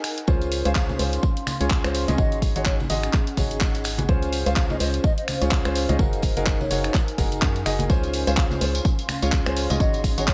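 Uplifting and euphoric, this piano house piece in Db major moves at 126 BPM with a swung 16th feel, opening on a clear baby grand piano riff with long sustain, filtered and pumping against the punchy, up-front electronic kick that arrives at 0.3 s with a dark, percussive organ-like FM bass. From the very start, a tape-warm house kit of finger snaps, handclaps, hi-hat and tambourine carries a large-room sound alongside an airy, breathy pad treated with chorus, while ringing tambourine and congas played with hard hands sit in the background. From 0.7 s a mellow, hollow silver concert flute adds a tongued melody with vibrato as the chords cycle through Dbmaj7, Ab7sus4 and Gb69 under light reverb.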